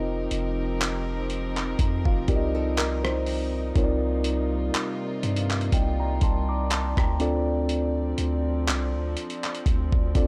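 Moody and sensual, this slow contemporary R&B excerpt in C dorian sits at 61 BPM with a lightly swung 16th feel, as a mellow tine electric piano and reedy, gut-toned bowed strings with light vibrato hold chords over a deep, sine-like 808-style bass that sits up front. A gritty, sampler-style soul drum kit with a thumpy kick, hi-hat, rim click and handclaps enters at 0.3 seconds, sounding compressed and re-recorded in a small room, while a dark, thumb-plucked nylon-string guitar with finger squeak drifts in the background with tape-echoed arpeggios from 1.8 to 3.7 seconds. The harmony moves from F7sus4 to Cm11 and Dm7, all within a dry, gritty hardware sound carrying transformer saturation.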